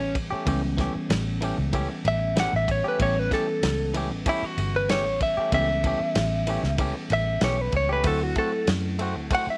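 Swaggering and laid-back, this short cut from a longer straight-eighth soul blues in A mixolydian moves at 95 BPM, with an up-front, compressed clean electric guitar soloing the melody through slapback echo while a twangy second clean guitar plays stabs, a bell-like tine electric piano comps, a round, foam-muted fingered bass holds the bottom, and a dry soul drum kit with tight kick, ride cymbal and medium-tuned snare enters at 0.2 seconds in a small room, the harmony sitting on A7 before moving to D7 at 8.0 seconds.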